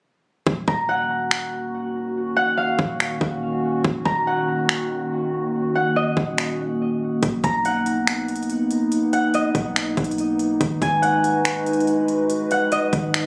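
A half-time trap groove at 142 BPM in 4/4 drives this spacious, ethereal cloud-rap excerpt in Eb minor. From 0.5 seconds, an up-front electronic kit of finger snaps and a hard-clipped kick sits over a deep, boomy sine 808 that stays mellow in the background, with crisp hi-hats joining at 7.2 seconds. A dark, warbling lo-fi pad holds slow-attack sustained chords, moving from Ebm7 to Bmaj7 and then Abm7, colored by chorus and its own reverb and pumping under sidechain compression for a nostalgic drift. Above it, a thumb-plucked concert harp carries the melody, its ringing acoustic tone trailed by delay. The whole track has a wet studio reverb and a compressed, phone-in-the-room character that adds to its atmosphere.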